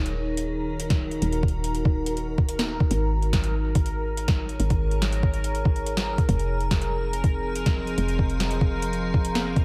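IDM with an intricate, melancholic mood, this short fragment of a longer piece moves through Ebm, Absus4 and Fm7 chords in a steady, straight 4/4. An icy, crystalline glass pad holds sustained chords with a slow attack and long release, its detuned unison sine tone carrying an airy noise layer and a moving notch, treated with chorus and its own reverb while sidechain pumping makes it breathe. Up front, a woody, round FM bass plays dark, decaying low notes with a fast attack and a touch of tube saturation. A bubbling stepped-filter texture hovers on a single high note, its resonant sawtooth jumping through random filter steps beneath chorus and reverb. An analog electro drum machine enters at 0.1 s with a punchy, overdriven snare and metallic hats that sound re-recorded in a large room, and a gritty, thumpy, pitched-up kick with tape character joins at 0.9 s as the most forward part, all set in a light reverb.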